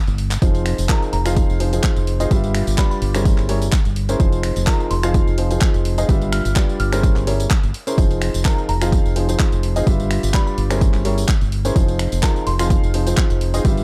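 Piano house in F minor at 127 BPM, this soulful, energetic cut from a longer piece rides a lightly swung 4/4 groove. A layered house kit of finger snaps, handclaps, hi-hat and tambourine that sounds re-recorded in a small room opens with a short drum fill, and an overdriven, punchy electronic kick lands up front at 0.4 seconds. A round, dark fingered electric bass holds low between F1 and G1, pumping against the kick, while a clear, woody upright piano carries the riff through a looping Fm7, G7 and C7b9b13/G progression with tape echo and the same sidechain pulse. Entering at 0.9 seconds and dropping out at 12.7, a glassy FM synth bell with a warbling, vintage chorus sound floats high in the background, its crystalline, fast-attack notes decaying into tape echo. The production is dark and warm, wrapped in digital ambience.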